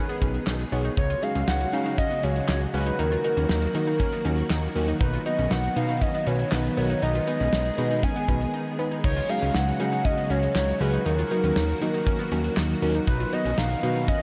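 Nocturnal and melancholic, this synth-pop fragment at 119 BPM drifts in a dreamy cathedral reverb: a hollow, woody clarinet-like synth lead with vibrato and diffuse delay sings the melody over vintage string-machine violas holding sustained chords, a thick, saturated analog bass sits up front, a damped 70s drum kit brings a tight kick, fat snare and handclaps, a soft FM electric piano stays in the background, and a bright analog pluck spins arpeggios through its own delay, while the harmony cycles through G#m/B, C#sus4, D#m and B with a brief break at 8.5 s.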